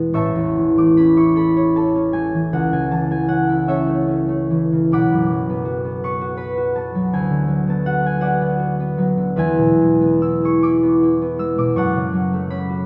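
Classical solo harp piece in A major and a rubato 6/8 at 43-56 BPM, this serene, graceful fragment of a longer work features a ringing, thumb-plucked concert harp spanning A1 to E6, up front yet heard from further back in a concert hall whose 1.9 s reverb blooms around it as the harmony moves from A through Bm and E to settle on F#m at 11.7 seconds.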